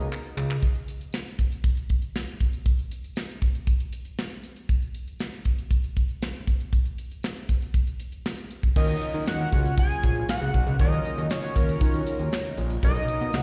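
Danceable, funky early-eighties boogie funk at 118 BPM in Eb minor, cut from a longer piece: a tight, dry, up-front funk kit with handclaps fills from 0.1 seconds while a jingly background tambourine joins it, and the two play alone from 0.6 seconds until the fat, saturated, detuned analog bass returns at 8.8 seconds with a mellow, vibrato-laden analog lead carrying the melody, a glossy chorused polysynth in the background, and a very quiet, swirling phased string machine holding sustained chords over Ebm7 and Bmaj9, all heard as a live gig through the venue's PA with small room ambience and recital hall reverb.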